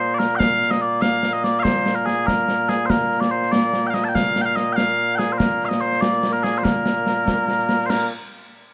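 Scottish traditional pipe music in a straight 6/8, this brief ceremonial, proud fragment is cut from a longer piece. Small bagpipes carry the melody up front with a mellow, sweet, continuous tone and vibrato, while concert snare drum, concert bass drum and clash cymbals enter at 0.2 seconds, their acoustic sound set in a small room with bright cymbals. Light reverb and close, detailed microphones frame the performance.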